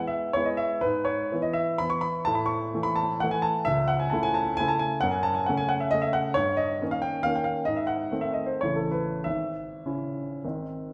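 A baby grand piano plays alone, its tone present and polished, placed up front in the sound. This is a romantic classical dance in 3/4 with dotted rhythms, played with free rubato so the pulse drifts between 89 and 145 BPM, giving it a wistful, capricious character. The harmony moves from E major through A toward C# minor, which settles in at 5.0 s and passes through F#m, D#7/G, G# and A before resting on C#m/G#. The piano ranges from G#1 up to C#6, filling the low and high registers. A wet recital hall reverb with a 1.6 s decay surrounds the instrument, and the passage is cut from a longer piece, ending at 10.9 s.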